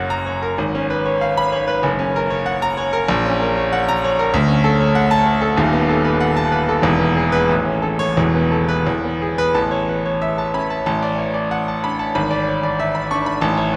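A clear concert grand piano, up front with deep bass, long sustain and audible action noise, plays a passionate, stormy virtuoso classical study alone in free rubato, its sound ringing through the wet reverb of a vast, echoing cathedral as the harmony moves to a new key at 4.3 s and a contrasting passage arrives at 9.6 s before this portion of a longer piece breaks off at 13.8 s.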